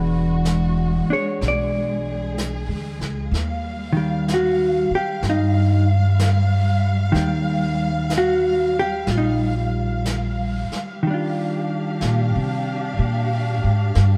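A softly reverberant room sound, heard from a little distance, frames this intimate, tender jazz ballad excerpt, which moves at a slow swung pace in four. An up-front hollow-body electric guitar, dark, clean and picked with a compressed edge, carries the accompaniment, while a lush bowed string section holds sustained chords with vibrato, soft attacks and a smooth top. The pizzicato upright bass sits close and woody on steel strings, and a brushed drum kit enters at 0.5 seconds, its medium-tuned snare and hi-hat sounding natural and small-roomed, set low in the mix. The harmony drifts from an E13 chord to Ebadd9 at 3.3 seconds, then settles on Ebmaj9 at 11.0 seconds, where the upright bass steps forward with a brief solo as the phrase begins again.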